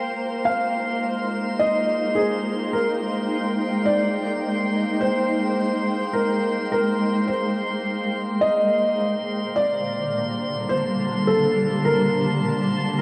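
Warm and peaceful, this slow ambient excerpt pairs a soft, felt-muted upright piano melody, with its intimate, boxy tone, audible action noise and a touch of delay, against a bright, shimmering pad of sustained chords up front, while an organ-like drone hums in the background and a glassy texture of drifting overtones floats high above, all set in a lush hall reverb as the harmony shifts from Abmaj9 to Gmadd9/Bb at 8.4 seconds.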